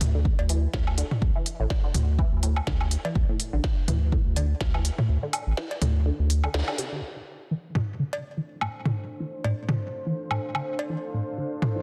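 A dense, heavily limited modern master with light digital ambience frames this short cut from a longer minimal techno piece, hypnotic and clinical at 124 BPM in 4/4 with a 56% swing on the 16ths, in D minor. A deep, up-front electronic kick anchors the groove beneath a round, dark analog bass that pumps against the sidechain, while a minimal click kit adds a tiny snare and clicky hats, both softened by low-pass filtering. Up-front electronic toms, cowbell and woodblock are layered and overdriven, their hits trailed by digital delay. Running nearly the whole way through, a juicy, squelchy blip pluck with ring-modulated resonance rides a phaser, cassette-tape grit, delay and its own sidechain pumping. The kick drops out at 5.1 seconds, a band accent lands at 6.5 seconds, and the bass and click kit fall away soon after as the music moves from D5 to a Dm7 chord. A moody pad with a slow attack and sub-octave depth, thickened by chorus and reverb, rises in at 8.8 seconds to carry the final stretch alongside the pluck and percussion.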